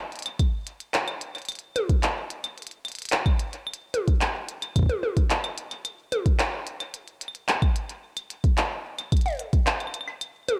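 IDM in 4/4 with a straight feel, this short cut from a longer piece sets an intricate, glitchy mood. A glitchy electronic drum kit of claves, handclaps, clicky hi-hat and toms runs from 0.1 seconds, overdriven and fed through a digital delay. A soft, overdriven electronic kick enters at 0.4 seconds and sits louder than the kit, dropping out briefly before returning at 1.5 seconds, where the second section begins. Both parts sound re-recorded in a small room and sit up front. The production is dark and warm with a light reverb, and the kick stops at 9.6 seconds while the kit carries on to the end.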